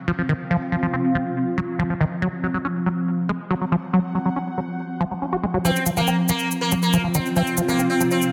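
A dense, heavily limited modern master and a lush hall reverb give this short psychedelic trance cut an alien, intense air at 140 BPM in a straight 4/4. From the start, a swarming drone of detuned, warbling sine voices holds tense sustained chords under a filter sweep, while a granular cloud pad spreads a blurred, mellow texture above it, each carrying its own built-in reverb. Up front, a liquid acid bass works a squelchy, resonant sawtooth riff through its own filter sweep, with phaser and delay coloring its fast-attack, decaying notes. The harmony shifts from F5 to Gb5 at 2.2 seconds and returns to F5 at 5.6 seconds, when a buzzing, plectrum-plucked sitar enters with a bright melody, its sympathetic strings ringing through phaser and delay. A grainy cabasa, close and dry, joins at 5.7 seconds to add acoustic percussion to the final stretch.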